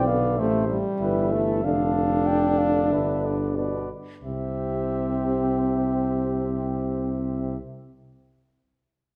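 Stately and triumphant, this short classical passage for brass quintet is cut from a longer piece and moves in a straight 4/4 that slows over its first 4.2 seconds. A dark trumpet carries the melody high in its range with light vibrato and a soft attack, while a mellow flugelhorn sings a second line just beneath it. The French horn sits up front with a warm, vibrato-rich tone in the middle of the texture, and a clear but very quiet euphonium with a vintage color adds low accompaniment. Underneath, an up-front tuba anchors the bass with a rounded, soft-edged sound. The harmony passes from A minor through D minor and G before resolving to C major at 4.2 seconds, where the music turns to a new section. All five players sound together throughout, framed by a moderate recital hall reverb.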